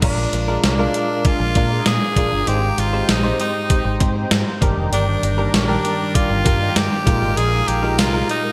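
A raspy, gritty tenor saxophone carries the melody up front with vibrato and a forceful edge, its tone trailing shimmer reverb and digital delay over a nostalgic, moody 1980s-style pop groove at 98 BPM. A bell-like tine electric piano and a bright, compressed clean guitar riff sit under it, while a foam-muted fingered bass adds round, dark low end and a thumpy 12-bit drum machine with crash, hi-hat, tambourine and snare drives the beat through gated reverb. A swirling phased analog pad enters at 0.6 seconds and very quiet sawtooth synth brass stabs arrive at 1.2 seconds as the chords move from Bb7 through Abmaj7 and Ebmaj7 to Bb7sus4, all set in a lush hall ambience with bright digital production.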